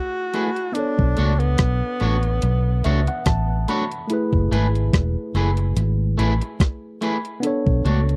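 A dry, close 1970s-style studio sound frames this smooth, bittersweet lovers rock reggae fragment at 72 BPM in F# minor, where a breathy, whispered tenor saxophone with scooped notes, vibrato and tape echo carries the melody until 3.7 s over a worn, slightly out-of-tune tine electric piano that adds a fill from 2.4 s, twangy guitar stabs at the edge of break-up bathed in spring reverb, a crisp, overdriven 8-bit drum machine with a thumpy kick, hi-hat and rim click, and a dark, round, foam-muted fingered bass that enters up front at 1.0 s, with the chords moving between F#m11 and Bm9 on a swung 16th feel.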